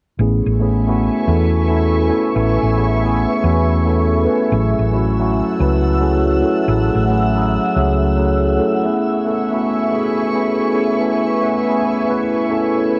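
Amapiano with a hypnotic, deep mood, cut from a longer piece, where a mellow, clean tine electric piano with phaser and cassette tape colour plays an Amaj9 accompaniment up front from 0.2 seconds, a round, punchy hollow-body bass sits dark and forward until 8.6 seconds, and a glassy, ethereal FM pad with slow attack, ensemble chorus and built-in reverb holds sustained chords from 0.8 seconds, all in a small booth-like home cassette sound.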